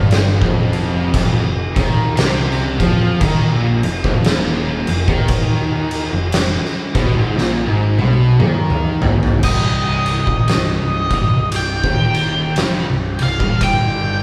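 A slow, swung 58 BPM pulse in 4/4 drives this brooding, heavy stoner and doom metal passage in C minor, where an oversized low-tuned drum kit with a fat snare, punchy kick and dark cymbals sits up front beside a bright, double-tracked overdriven electric guitar riff, two distorted thick fuzz guitars (one very quiet) and an overdriven fuzz picked electric bass in the background, grinding over an F5 chord until a drum fill from 7.4 s leads at 9.4 s into a Cm passage where the overdriven guitar stops and an octave-fuzz lead guitar with wah, distortion and slapback echo takes a high melody up front, the band captured live together in one large studio room with moderate reverb.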